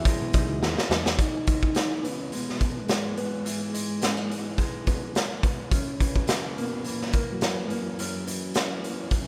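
A lightly swung 106 BPM groove in 4/4 drives this hazy, dreamy indie bedroom-pop fragment in E major, where a gritty, saturated garage drum kit sits up front with a punchy kick and pumping room sound, throwing in a fill at 0.6 s before a dark, round, foam-muted picked bass and a very quiet, ethereal airy pad both fall away at 1.2 s, leaving the drums and a small, warm fingerpicked nylon-string guitar with a warbly pitch drift beneath a soft, octave-layered synth lead whose tremolo and vibrato carry the melody over Emaj9 and Emaj7 harmony that moves to F#7 at 5.7 s, all in a rough, lightly reverberant home-demo sound.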